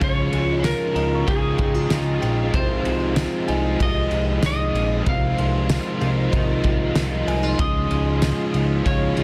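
A straight 4/4 groove at 95 BPM from a loose indie drum kit, with boomy kick, fat snare, ride cymbal and tambourine, carries this dreamy, floating dream pop excerpt in Ab major, moving between Dbadd9 and Ab6 chords. A clean lap steel guitar, played with fingerpicks and slide through tape echo, sings the melody over a thick sawtooth analog bass, shimmering octave-doubled arpeggios from a fingerpicked twelve-string acoustic guitar, dark overdriven electric guitar with tremolo and ensemble chorus, and mellow, flute-like tonewheel organ chords turning through a slow rotary speaker with key click. A bell-like glockenspiel struck with soft plastic mallets rings in the background until 8.1 s, and the mix sits in light small-room reverb under a dense, heavily limited modern master.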